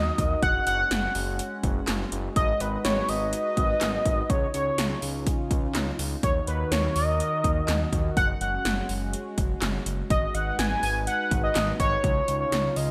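Nocturnal and driving, this synth-pop excerpt moves at 124 BPM in a straight 4/4 over a cycling progression of Gbsus2, Abm7, Dbadd9 and Ebm. A bold, up-front octave-doubled lead carries the melody with vibrato, chorus and digital delay, while a shimmering, detuned pulse-width pad holds slow-attack sustained chords and a smooth, saturated synth bass anchors the low end. From 0.2 seconds, 80s electronic pad drums add a punchy kick, gated snare, metallic hi-hats and handclaps, all set in a lush hall reverb within a bright 1980s-style digital production.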